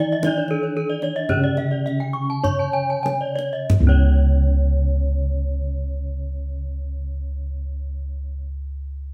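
This Balinese gamelan fragment, cut from a longer piece, opens with bronze metallophones and bossed gongs sounding together: a melody between C#4 and C#5, a low accompaniment, and two arpeggio lines ringing high above in C# pelog. The mood is shimmering and brilliant, and the 4/4 pulse moves in a straight feel at a stately 46-61 BPM, slowing down through the first section before a second section begins at 3.7 seconds. The metallophones all share paired tuning that produces shimmering beats. One, struck with padded disc mallets, sounds mellow and soft, while others played with horn mallets ring out, one of them notably bright and two carrying a boxy small-room character. Up front in the mix, the bossed gongs carry the bass with a round, beating, airy tone, and a kendang enters at 0.2 seconds with deep, close and dry hard-hand strokes before stopping at 4.3 seconds. The ensemble plays live in one room, set in a moderate large studio reverb.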